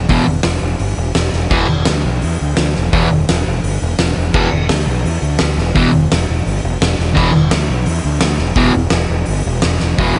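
Raw, menacing garage rock in a short cut from a longer piece, driven by a bright, double-tracked fuzz guitar riff up front over an overdriven, punchy fingered electric bass and an oversized low-tuned drum kit with a fat snare, dark cymbals and a pumping stone-room sound, all three playing from the start through a drum fill at 9.8 seconds to the end.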